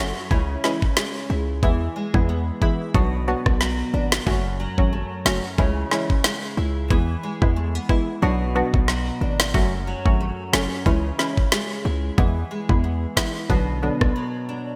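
Bouncy and tough, this dancehall excerpt in F# minor at 91 BPM, with a swung 16th-note feel, pairs a knocking, woody, up-front island pop drum kit treated with gated reverb and a punchy, heavy 808-style bass with crisp, evolving wavetable chord stabs that pump under analog chorus and a bright, fingerpicked nylon-string guitar playing arpeggios over a C#m, E, Bm, F#m cycle, all in a light-reverb, 1980s-style digital production that drops into a brief break at 14.2 seconds.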